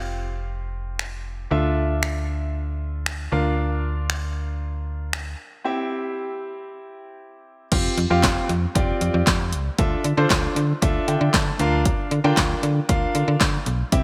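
A tape-warm analog drum machine sits up front and enters at 1.0 seconds with a punchy kick and snare, hi-hat, handclaps, finger snaps and crash cymbal, with a short room sound on the snare, claps and hats. This is a summery, carefree dance-pop passage cut from a longer piece, moving at 116 BPM in a straight 4/4 in F major. A snappy FM bass with a metallic, fast attack and decaying notes holds the low end from the start, pumping against the sidechain. A clear, polished concert grand piano with deep bass and short sustain plays the accompaniment, also sidechain-pumped and touched by slapback echo, cycling through Fsus2, Dmadd9 and Bb/D before a C chord. A break arrives at 5.6 seconds, and the piano takes a fill at 10.8 seconds in the second section. A moderate, lush hall reverb gives the mix a big arena sound.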